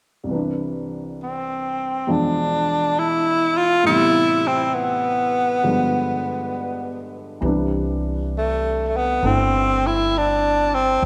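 A jazz ballad fragment at a slow, swung 67 BPM in C major, with an intimate, late-night mood. A warm baby grand piano plays rich extended chords from the start. At 1.2 seconds a breathy tenor saxophone takes the lead up front, its clear tone shaded with vibrato, scooped notes and a slapback echo, and a woody pizzicato upright bass joins at 7.4 seconds as the harmony returns to Cmaj9, all set in a long, lush plate reverb.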